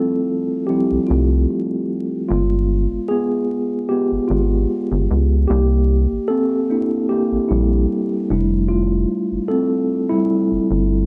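A lightly swung sixteenth-note feel in four sets an unhurried, sultry pace for this short R&B fragment, which is cut from a longer piece. A mellow tine electric piano opens alone and carries a solo across the whole passage, its clean tone heard through built-in speakers and sitting up front. At 0.9 seconds a rubbery square-wave bass joins in the low register, hollow and bouncy, with a resonant filter pluck that gives each note a fast attack before it sustains in a dark, forward tone. The harmony moves from a rootless Dm11 through G7b9 and C7 before resting on Fmaj13 at 8.3 seconds, giving the passage an introspective color. A moderate small-room reverb and a bed of vinyl crackle wrap the sound in an intimate, slightly worn atmosphere.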